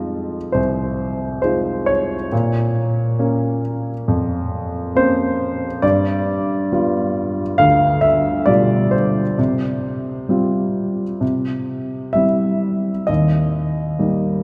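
A dark, mellow grand piano opens alone in F minor, playing a lyrical, melancholic classical passage at a rubato 67 BPM in 4/4, tuned slightly low to A4 = 437 Hz. The instrument sounds worn and intimate, close up front with audible action noise and short sustain, its lines spanning C2 to F5 over harmony that moves from Fm7 through Bbmadd9 and G7 to Csus4, C and finally Eb at 13.1 seconds. A wet church reverb with a 3.2-second decay surrounds this 14.4-second fragment cut from a longer piece.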